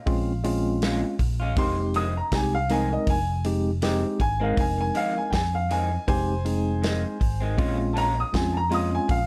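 Brooding and smoky, this straight-eighth soul blues excerpt sets a woody, boxy upright piano up front, its audible action noise and long plate-reverb sustain carrying a solo across the full 9.3 seconds over a Bbm7 to Fm7 progression that returns to Bbm7. A tine electric piano with medium tremolo through a combo amp supplies the accompaniment, while a slightly broken-up electric guitar through a small old amp adds picked stabs with subtle chorus and slapback echo. Underneath, a round, dark fingered electric bass and a dry, natural soul drum kit with a punchy kick and rolled-off top hold the groove in a lightly reverberant room.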